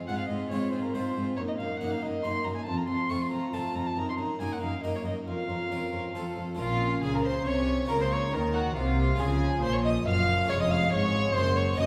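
A dark, nasal solo violin leads up front, its reedy gut-string line riding over a stormy, driving baroque-style concerto movement in Bb minor at 139 BPM in 3/4, a cut from a longer piece. Two violin sections and a dark viola section sit in the background with light vibrato, while a close, bright harpsichord and a distant cello section carry the accompaniment and bass, joined by a double bass section from 6.6 seconds as the harmony settles onto Bb minor and Db. The ensemble is heard from further back in a resonant recital hall.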